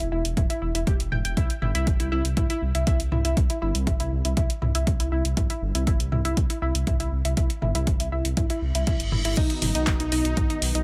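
Set in a digital ambience, this driving, hypnotic slice of melodic techno, cut from a longer piece, moves at 120 BPM in a straight 4/4, with its harmony turning from E minor to C and then to B. An analog drum machine supplies crash cymbal, handclaps, hi-hat and toms from the very start, and a punchy, tape-warm electronic kick, re-recorded in a small room and placed up front, arrives at 0.4 s. Underneath, a dark detuned saw bass sits up front with a deep, rumbling, beating tone and sidechain pumping. A tight sequenced synth spins arpeggios from a wave-folded, filter-plucked blend of sawtooth, square and sine, coloured with chorus, phaser, dub echo and its own sidechain pumping. An electronic reverse cymbal rises in at 8.6 s, and at 9.4 s a smooth supersaw melody holds a D#4 while a lush, thick, nasal pad with chorus and a soft attack spreads sustained chords in the background.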